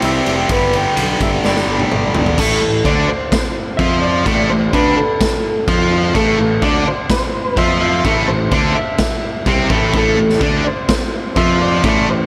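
Driving straight 4/4 at 127 BPM in A minor, this angsty, cathartic quiet-loud alternative rock excerpt opens with a dark, lo-fi electric lead through a small old amp carrying the melody with spring reverb and slapback echo above a tight, bright distorted riff, a growly fuzz bass, a punchy, gritty garage drum kit and a finger-squeaking jumbo acoustic guitar picking arpeggios over C and G until 2.4 seconds, when a drum fill gives way to A minor and a sludgy overdriven guitar joins in the background, all filling a big arena-like hall.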